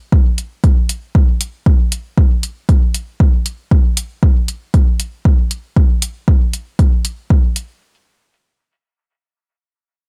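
Techno at 117 BPM in a straight 4/4, this short cut from a longer piece has a hazy, hypnotic mood. A deep, overdriven electronic kick drum sits up front from 0.1 seconds, layered and given a boxy small-room character by being re-recorded in a tight space. An electronic hi-hat joins at 0.4 seconds, also overdriven and layered, placed up front but lower in level than the kick. Both drum parts carry that gritty, roomy texture, while a digital ambience surrounds them. The kick stops at 7.4 seconds and the hi-hat at 7.7 seconds, as the fragment closes out at 7.8 seconds.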